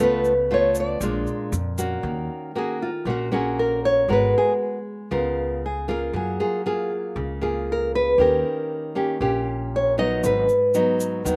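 A straight 4/4 bossa nova pulse at 117 BPM carries this smooth, wistful excerpt in Eb minor. A grainy, close egg shaker joins from 0.2 to 2.0 seconds and returns at 10.2 seconds, while a woody, dark pizzicato upright bass holds the low end. One fingerpicked nylon-string guitar supplies the accompaniment in a classical manner, up front, its fresh strings giving an occasional finger squeak as it moves through chords such as Ebm7, Abm9 and Gbmaj9. A second nylon-string guitar, small-sounding and up front, carries the melody, and a nylon-string guitar solo runs from 2.0 seconds to the end. Light reverb and an open-air recording give the performance a clean, natural setting.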